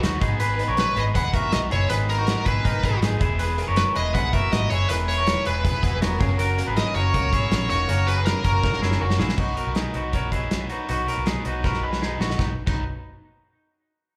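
Heard as a live gig through the venue's PA with club reverb, this bright, youthful excerpt of jangly indie pop at 160 BPM in B major rides a loose, up-front indie kit with a pumping room and a round, foam-muted vintage fingered bass, while a twangy clean electric guitar picks arpeggios over a biting overdriven accompaniment guitar and a worn, slightly detuned upright piano with audible action noise. A smooth overdriven lead guitar carries the melody from 0.8 to 8.8 s, and a lush, distant violin section with vibrato adds a second line through the opening section. The chords move from B through E and F# back to B, with a drum fill leading into that return at 9.4 s and another leading into the closing section at 12.4 s.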